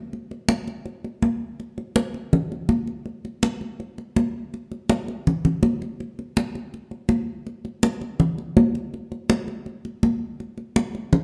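The recording sits in a large studio with a generous, wet reverb, yet the congas are miked close and dry, placed up front in the sound. This short cut from a longer Latin piece is driving and passionate, moving at a brisk 164 BPM in a straight 4/4 feel. The congas carry the whole track alone, entering at 0.1 seconds and playing through to 11.2 seconds. Their high-tuned, thin skins give a bright, damped, acoustic tone. The music shifts into a new section at 4.5 seconds, with the percussion still the only voice.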